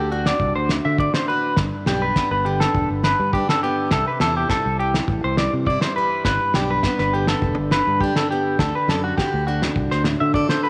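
A twangy, slightly broken-up electric guitar through a small old amp plays up-front arpeggios with subtle chorus and tape echo over a bright, picked steel-string acoustic guitar with audible finger squeak and a round, punchy fingered bass, joined at 0.3 seconds by a muffled, cloth-damped drum kit with a fat snare and tight kick, as this carefree highlife guitar-band passage moves through D, G, C, G and D in a moderate echo-chamber reverb.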